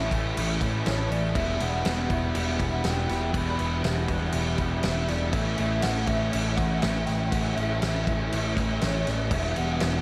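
A dreamy, reverb-soaked mix opens this wistful ten-second shoegaze and dream pop excerpt in A mixolydian at 121 BPM, where a loose indie drum kit with a fat snare and punchy kick sits up front over a fuzzed, punchy picked bass as the chords move between A and Em. Three guitars stack their riffs: a biting, bright overdriven part with ensemble chorus, a slightly broken-up lo-fi guitar through a small old amp washed in reverse reverb, and a sludgy, dark double-tracked distorted guitar low in the background. Drifting above them, a hollow, woody clarinet-like synth lead carries the melody with soft, sustained vibrato, chorus and a diffuse ambient delay.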